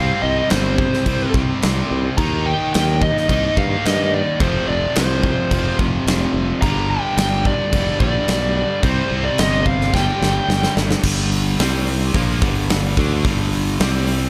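Hard rock with an aggressive, menacing mood, this excerpt from a longer piece pairs a dark, high-gain lead guitar melody with two picked rhythm guitars on a riff: a bright, overdriven stack guitar and a scooped, compressed distorted guitar set in the background. A growly, direct fingered bass sits up front beside a huge acoustic arena kit with a punchy kick, a medium-tuned snare, hi-hat and crash in a big room, all under light reverb. A drum fill runs from 9.9 to 11.0 seconds, where the lead and the background guitar drop out, leaving the stack guitar, bass and drums to carry the final section to 14.3 seconds.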